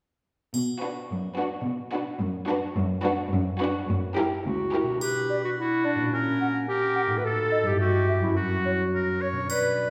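A playful, whimsical cinematic film cue in B minor at 107 BPM in 2/4, quirky and magical in mood, cut from a longer piece. It opens with a lush, up-front cello section on the bass, a smooth viola section and two bowed violin sections (one focused, one light and distant in the background), with a triangle sounding at the start. From about 4.4 s the strings give way to a bright solo clarinet, followed by a mellow, ringing fingerpicked concert harp playing arpeggios, a clear oboe and a hollow flute, all set in a scoring stage reverb that places the ensemble further back in the room.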